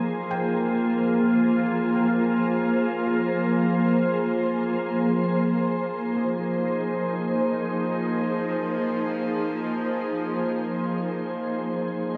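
Ambient music in free time and F minor, spacious and melancholic, this short piece cut from a longer work drifts through a dreamy mix soaked in plate reverb. A glassy FM pad sits up front for the whole 12.2 seconds, holding sustained chords with a slow attack, long release and a vintage, warbling character thickened by ensemble chorus and shimmer reverb. Beneath it, a very quiet felt-muted upright piano plays soft, intimate arpeggios with a thin felt tone throughout. The harmony rests on Fm11 before settling to Fm7 at 5.8 seconds. At 7.2 seconds a bowed-like drone enters on F3, its tense, string-like sawtooth sound carrying vibrato, a bright edge and a noise layer until the end.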